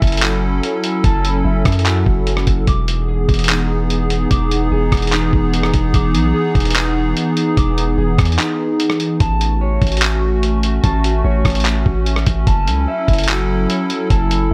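Atmospheric cloud-rap hip hop at 147 BPM in a half-time feel, blissful and dreamy in E major, where a hollow, flute-like pad holds pumping chorused chords over a deep sine 808 bass and a muffled, tape-warm sampler drum kit of thumpy kick, handclaps, hi-hat and rim click, while a twangy, slightly broken-up electric guitar picks delayed arpeggios through a small old amp, the harmony moving from F#m7 to Emaj7 at 2.7 seconds and A6 at 9.2 seconds, with the kick dropping out briefly from 8.4 seconds in this dry, close-sounding cut from a longer piece.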